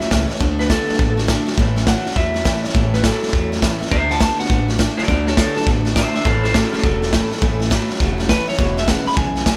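Rockabilly at a swinging 205 BPM in A major, this retro, rollicking fragment is cut from a longer piece and runs for about 9.6 seconds. Up front, a raw garage drum kit drives hi-hat, punchy kick and a medium-tuned snare, sounding saturated and gritty in a small, pumping room with a rolled-off top. An upright bass, plucked on gut strings, adds a woody, thumpy low end beneath it. Two electric guitars run through a small old amp: one carries the twangy, lo-fi melody high above with a digital delay, while the other plays a slightly broken-up riff low in the background. A picked steel-string acoustic dreadnought, full-bodied with fresh strings, fills in the accompaniment behind them as the chords move from D to A and back, landing on E near 8.6 seconds.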